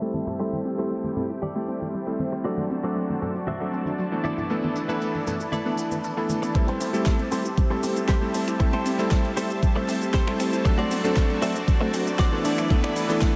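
Nu-disco at 117 BPM in A dorian, cosmic and groovy, this excerpt from a longer piece cycles through Am7, D7 and E7sus4 under a dreamy mix soaked in huge ambient reverb. A clear, clangy electric grand piano sits up front with sidechain pumping and tape echo, over a lush, detuned sawtooth pad with chorus, phaser and 12-bit grit, a very quiet round analog pluck playing arpeggios, and a clean, picked direct guitar riff in the background that carries its own filter sweeps. An overdriven pop kit of snaps, shaker, fat snare and warm hats runs throughout, joined in the first half by bright, hard-hand tambourine and congas, until a knocking, overdriven electronic kick enters at 6.6 s for the build-up.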